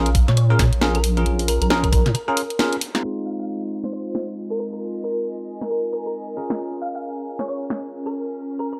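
A bell-like, bright electric piano plays stabs through lush chorus over a deep, wobbling bass and a knocking, tape-tinged kick in this skippy, bouncy two-step UK garage excerpt at 135 BPM in Bb minor, swung on the sixteenths, while a round, thumb-piano-like pluck carries a mellow melody through dub echo. After the bass and kick drop out at 2.1 seconds for a short break with a band accent, the cracking snare and hi-hats of the garage kit continue as a filter sweep moves across the electric piano from 3.0 seconds over a move from Bbm7 to Fm7. At 4.0 seconds a nostalgic, lo-fi, warbling pad fades in with phaser and sidechain pumping, all wrapped in light digital ambience.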